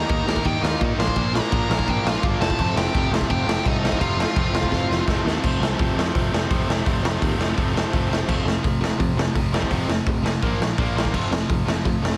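The recording is dry and heavily compressed, with a squashed, radio-like sound and a small, pumping room around the drums. This upbeat, rebellious punk rock excerpt opens mid-flow, driven by a raw garage drum kit sitting up front with a punchy kick, a medium-tuned snare, hi-hat and crash cymbal, all gritty and saturated with a rolled-off top. Beneath it, a picked electric bass growls, while two bright, overdriven guitars churn out the riff in the background, one with a biting edge, joined by a third, very quiet double-tracked distorted guitar. A dark, nasal lead guitar with a parked wah carries the melody until 5.0 s, overlapping a drum fill that begins at 4.7 s. The riffs move through Eb, Bb and F chords, and the quiet double-tracked guitar rejoins at 8.3 s for the final section, which lands on Bb5 and F.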